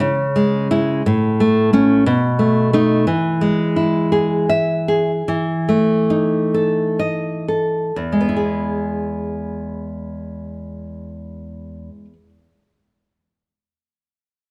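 A romantic solo classical guitar piece, sunny yet nostalgic, unfolds in 6/8 at a slow, rubato pace that slows down between 2.1 and 7.9 seconds before settling into a new passage. A single nylon-string guitar, fingerpicked and bright, sits up front and ranges from its low bass to high treble until 12.3 seconds. The dark, warm production places it in a moderate recital-hall reverb, and the passage is cut from a longer piece.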